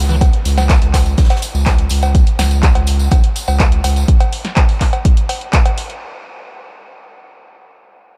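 A dry cut from a longer acid house track, this driving, trippy drop is led by an up-front electronic kick drum, punchy and re-recorded in a large room, with a deep, thick, saturated sub bass pumping beneath it until 4.0 seconds. An analog drum machine fills in cowbell, handclaps, hi-hat and snare, while a jingly acoustic tambourine sits in the background. A very quiet acoustic brush kit adds soft hi-hat and snare touches from a small room until 2.0 seconds.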